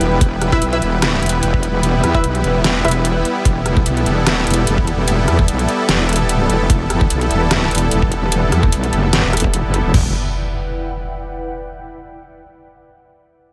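A dry, close, up-front mix opens this aggressive, menacing excerpt of heavy wobble dubstep, which moves with a half-time feel and a light swing. A saturated, detuned sawtooth wobble bass carries a filter sweep and drives the track with overdrive and chorus, while a lush supersaw pad holds sustained chords that pump against the sidechain. An electronic kick drum with a knocking punch sits at the front, joined by a layered dubstep kit with a deep snare, metallic hi-hats, rim clicks and crash cymbals. Early on, a bold orchestra-hit-like synth stab cuts through with a bright, plucked attack, a noise layer, reverb and digital delay, appearing from 0.5 to 3.0 seconds. Far behind, an ethereal, airy pad shimmers with ensemble chorus and its own reverb. At 9.9 seconds an electronic impact lands as the groove drops away, leaving that hazy pad to ring on briefly.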